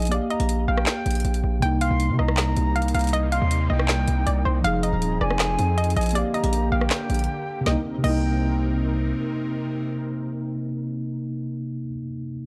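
A half-time trap beat at 159 BPM in C minor drives this dark, melancholic hip hop excerpt, with a trap kit of woody snare, metallic hats, handclaps, rim clicks and crash under a punchy, up-front 808 bass, while a hollow, nasal square pluck carries the melody through chorus and digital delay, a distant, vibrato-laden concert flute traces a delayed second line above it, a mellow tine electric piano sits close and clean over Cm7 and Fm7 harmony, and an airy, evolving pad with chorus joins at 1.6 s, all in a dry, dusky mix that breaks at 7.3 s before the drums drop out at 8.1 s.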